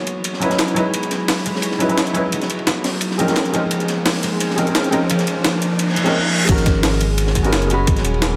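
Bathed in a lush hall reverb, this melancholic liquid drum and bass excerpt at 173 BPM opens with a glassy FM pad in the background, a ringing thumb-plucked concert harp under a filter sweep, a soft felt-muted upright piano with audible action noise, two drum kits (one a dark, crunchy breakbeat and the other an overdriven, pitched-up jungle sampler) and a very quiet riser and reverse cymbal that build over C#m11 and A#m11 chords until the drop at 6.5 seconds, where a smooth, nasal synth bass sits up front beside a tight electronic kick under a G#m11 chord.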